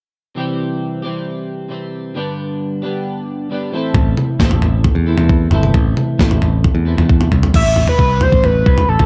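A screaming, gritty synth lead with distortion, phaser, chorus and analog delay cuts in at 7.6 seconds over this moody, cool indie rock piece at 134 BPM in A minor, where a compressed, clean twelve-string electric guitar riff moves through C and G to A minor before a thumpy, overdriven 12-bit drum machine and a growly, up-front picked bass join at 3.9 seconds, set in a dark, dry production.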